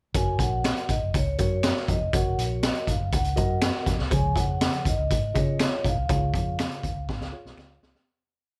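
A short, joyful slice of uptempo 1960s-style soul in F# major at 121 BPM opens at once with a raw garage drum kit, a vintage muted electric bass and a tine electric piano, with the vibraphone joining a moment later and finger snaps ticking in from 0.6 seconds. The drums sit up front with a gritty, saturated character, a high-tuned snare and a boomy kick driving a danceable backbeat soul groove. Underneath, the foam-muted bass is dark and round, playing a melodic, syncopated line with chromatic approach notes, while the worn, slightly out-of-tune electric piano pushes close-voiced chords sprinkled with grace notes. Over the top, the soft-mallet vibraphone rings with a slow motor vibrato, singing short song-like motifs in a mellow, boxy small-room tone, and the close, dry snaps stay in the background. Light reverb wraps the mix as the harmony moves from F# to C#, and the whole verse fades out from 6.1 seconds, with a drum fill from 7.1 seconds closing it off at 8.1 seconds.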